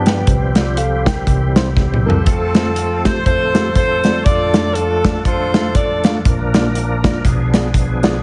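A clear, punchy saxophone section with light vibrato carries the melody from 2.1 to 6.2 seconds in this soulful, reverent uptempo gospel excerpt at 120 BPM in F major with a swung feel, set over a mellow, clean tine electric piano, a reedy, lightly overdriven tonewheel organ holding sustained chords through a slow rotary speaker with chorus vibrato and key click, and a dark, smooth acoustic drum kit with a tight kick that plays a fill at 1.8 seconds, with light reverb and a heavily compressed, radio-like sound.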